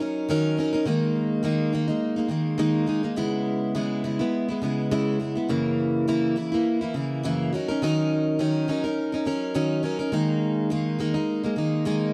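A picked, plugged-in steel-string acoustic guitar plays alone from the first moment, carrying this brief, hazy indie pop fragment of about 12.1 seconds in 4/4 with a light swing on the sixteenths. Its full-bodied, jumbo tone sits up front, coated in lush chorus, a warbly pitch drift and tape echo that give the mellow mood a dreamy, slightly unsteady glow. The harmony moves from D#m7 through G#sus2/D# to C#m7 and F#7, then returns to D#m7 at 7.5 seconds and G#sus2/D# at 10.1 seconds. The guitar covers a range from F#2 up to A#4. The sound is dry and close, in the manner of a 1970s studio, with only a light touch of reverb around it.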